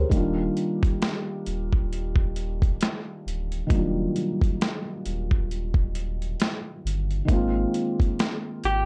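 Light reverb and cassette-tape haze color this short, nostalgic and dreamy lo-fi hip hop cut from a longer piece, moving at 67 BPM in Eb major with a 16th-note swing. Up front, a gritty, pitched-down boom bap sampler-style kit with a thumpy kick and high-tuned snare sits over a deep, sustained sine-and-triangle sub bass, while a felt-muted upright piano plays soft, dark, intimate chords with audible action noise, moving from Ebmaj7 to Ab6 at 7.3 seconds. At 8.7 seconds an electric guitar through a small old amp enters, slightly broken-up and fingered, with vibrato and a low-pass filter.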